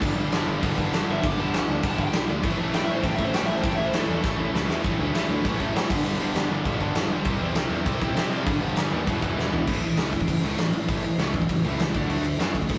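Up-front, big-room acoustic drums with splashy bright cymbals, a tight kick, a medium-tuned snare and fills drive this rowdy, energetic punk rock cut at 199 BPM, joined by a growly fuzz bass and three picked rhythm guitars riffing underneath (one tight and distorted, one distorted and very quiet, and a crunchy, double-tracked overdriven one that drops out at 9.7 s as the music settles into A major), while a biting overdriven lead guitar melody cuts through from 1.1 to 4.2 s, all in a rough rehearsal-room sound with light reverb and saturation.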